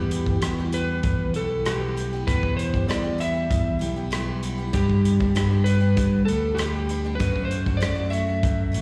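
Jangly and warm, this short folk rock and heartland rock fragment moves through Em, G and D/F# at an even, straight pace. A slightly broken-up electric slide guitar carries the melody over bright, fresh-stringed picked acoustic guitar with audible finger squeak, both touched with slapback echo, while a punchy, up-front picked electric bass anchors the low end. A loose indie drum kit with a rolled-off top enters at 0.1 seconds on hi-hat, kick and rim click, all heard as a live gig through the venue's PA with small-room ambience and recital hall reverb.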